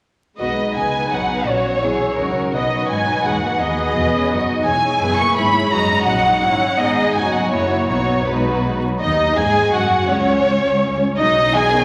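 A quick, spirited and graceful classical-period movement for string orchestra in B major at 168 BPM in 3/4, cut from a longer piece, in which an expressive, up-front violin section carries the melody over a second violin line, while a smooth viola section adds even accompaniment and a distant cello section joins a focused double bass section on the bass, all bowed with vibrato in a resonant concert hall and overlaid with vinyl crackle.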